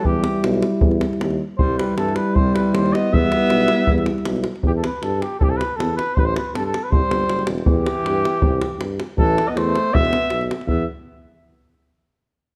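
Close, detailed microphones capture this Balkan brass band excerpt in a moderate recital hall, with a 1.5-second reverb tail adding space around the players. In a straight 2/4 at 158 BPM that speeds up as it goes, the piece sits in E harmonic minor and carries a fiery, virtuosic mood. A flugelhorn up front leads the melody with vibrato and a roomy, slightly distant tone, while a close-miked alto saxophone adds a vibrato-rich second line. The sax drops out briefly and returns at 6.9 s. A tight davul drives the beat up front, and a distant tuba with vibrato anchors the bass. In the background, a dark euphonium and a warm one with a smooth top and gentle vibrato play accompaniment until 4.5 s. The harmony moves mostly between Em and C, with passing A7sus2 and Am chords before settling on a bare E5.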